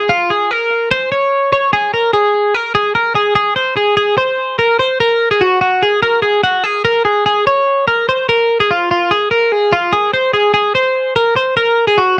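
Bright and breezy, this short indie pop excerpt moves at 146 BPM in a straight 4/4, carried entirely by a solo twelve-string electric guitar that plays from the start to 12.2 seconds. The picked guitar sits up front, bright, clean, twangy and compressed, in a register from F4 to Db5. A moderate studio reverb surrounds it, and the overall production leans dark and warm, with the piece shifting into a new section at 3.4 seconds.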